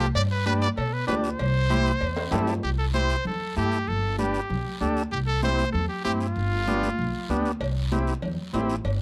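A punchy, up-front solo trumpet with vibrato carries the melody in this sunny, festive cumbia fragment, over a buzzy vintage combo organ with heavy vibrato, a woody pizzicato upright bass, a raspy guiro, distant high-tuned congas, and ringing cowbell and timbales that drop out during a drum fill beginning at 2.2 seconds and return at 7.6 seconds, all in a dry, close 1970s-style small-room studio sound.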